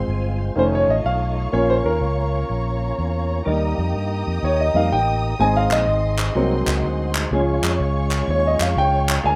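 Swung eighths at 124 BPM in 4/4 drive this short uptempo gospel excerpt, which feels reverent and uplifting as the chords move from F minor through Bb minor and Eb to Ab and Db. A woody upright piano with short sustain carries the lead throughout, playing a solo that sits in front of the band. A round, amped electric bass sits up front beneath it, while a percussive tonewheel organ holds sustained chords through a slow rotary speaker and chorus vibrato, its key click and fat tone adding body. Lower in the mix, a dark, lush studio string section bows sustained chords with vibrato and a smooth top. Crisp group handclaps, heard as if from a distant large room, join at 5.7 seconds, and the whole piece has the rough feel of a home demo with moderate studio reverb.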